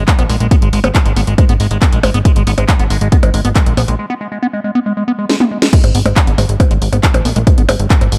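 A driving 138 BPM psychedelic trance pulse in straight 4/4, built on a heavy, up-front electronic kick and a techno drum kit of cracking snare, handclaps, hi-hat, toms, crash cymbal and percussion blips, sets an alien, dark mood in G# minor for this short cut from a longer piece. A punchy, funky analog bass with a snappy filter pluck sits low, while a squelchy, resonant liquid acid riff carries phaser, sidechain pumping and dub echo. A break at 4.0 seconds gives way to a drum fill at 5.3 seconds and a drop at 5.7 seconds, all in a dark, warm, dry production.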